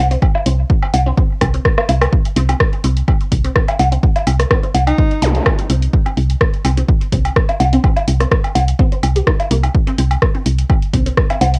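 Minimal techno at 126 BPM in C minor, this cool, quirky fragment of a longer piece rides a lightly swung 4/4 groove over a single C5 chord. An up-front, punchy electronic kick and a round, woody FM bass pinned to C2 anchor the track, with the bass breathing under sidechain pumping. Hi-hat and rim click from an analog drum machine fill out the beat, and a short drum fill arrives at 1.4 seconds, while overdriven woodblock and cowbell, re-recorded in a small room and trailed by tape echo, add a gritty knock. A squelchy, detuned blip pluck carries the riff between Bb3 and G4, its resonant filter and moving notch colored by phaser, ensemble chorus, analog delay, cassette tape grit and pumping. At 4.9 seconds a clear, close-miked alto saxophone slips in a brief jazz-style Eb4 with vibrato and tape echo, met by a quick electronic zap, all set in light reverb with a homemade cassette character.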